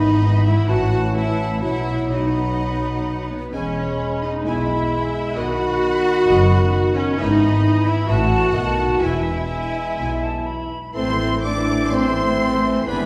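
In a flexible, rubato 4/4, this fast romantic movement for symphony orchestra, cut from a longer piece, sounds dramatic yet lively and graceful. A lush, focused violin section with vibrato and a smooth top carries the melody. A second, fuller violin section, an airy, bright, close-miked flute and a dusky, distant clarinet add second lines. Beneath them, an intense viola section and a roomy, dark bassoon supply accompaniment, and a mellow French horn section holds sustained chords in the background, while bowed cellos and a resonant double bass section anchor the bass with smooth, even tone. At 10.9 seconds the harmony moves to a minor chord as a warm oboe joins the second lines and a very quiet, vintage-toned trombone section adds held chords. The orchestra is heard from further back in a reverberant recital hall, giving the sound a spacious glow.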